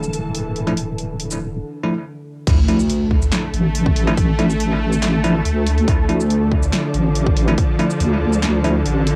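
Over a half-time 4/4 pulse, this meditative, dark deep dubstep passage sets a saturated, chorused wobble bass up front beneath a tense, string-like bowed drone and a flickering, grainy granular texture, while an overdriven deep house kit of snare, handclaps, hi-hat, shaker and crash runs throughout, bell-like tine electric piano stabs with dub echo and 12-bit sampler grit enter at 0.7 seconds, and a punchy electronic kick and a very quiet impact mark the drop at 2.5 seconds, all in a lightly reverberant home cassette recording.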